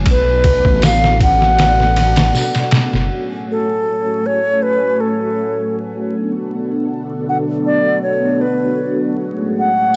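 Trip hop at 79 BPM in F# minor with a lightly swung feel, smoky and brooding, cut from a longer piece: a string machine voiced as cellos sustains dark, vintage chords through phaser and ensemble chorus, while a wooden flute with tape echo carries a pure, vibrato-laden melody over chords moving between Bm7 and F#madd9. A pitched-down, compressed sampler-style kit with a thumpy kick, medium-tuned snare and ride, a small-room acoustic tambourine, and a deep, rumbling detuned saw bass drive the opening; the kick drops out at 1.6 s, and drums and bass stop at 3.1 s, leaving strings and flute. The sound is a dry, gritty hardware recording with vinyl crackle, light reverb and a dulled top end.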